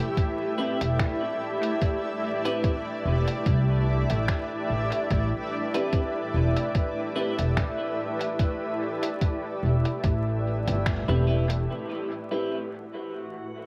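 A slow 73 BPM groove in 4/4 with a lightly swung sixteenth feel sets this deep, meditative ambient dub cut in A dorian, built on a muffled, pitched-down electronic kick up front and a lo-fi sampler-style kit of finger snaps and hi-hat soaked in dub echo, all colored by cassette tape. A woody pizzicato upright bass sits forward in the low register, while a clean, twangy electric guitar places bright stabs through lush chorus and dub echo over a blurred, evolving granular cloud pad holding an Am7 chord and a dreamy reversed texture drifting in the background. After a band accent at 10.9 seconds the rhythm parts fall away, and from 11.7 seconds a filter sweep moves across the pad to close the section, with light reverb and vinyl crackle framing a home-recorded cassette sound.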